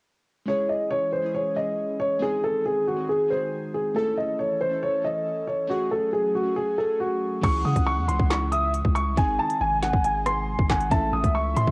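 A half-time drill groove arrives at 7.4 seconds, when the electronic kit drops in up front with a hard-clipped kick, woody snare, crisp hats, rim clicks, handclaps and crash, joined by a deep, sine-toned 808-style bass with long decaying notes, in this cold, menacing hip hop fragment cut from a longer piece. Before that, a dark, intimate concert grand piano carries the melody from 0.5 seconds, its action noise audible, over glassy digital keys with a filter sweep and an airy, breathy, detuned pad, both coloured by chorus and cassette tape. A velvety, wave-folded synth lead with vibrato and tape echo adds a second line once the beat lands, all set in light reverb with the character of a home cassette recording.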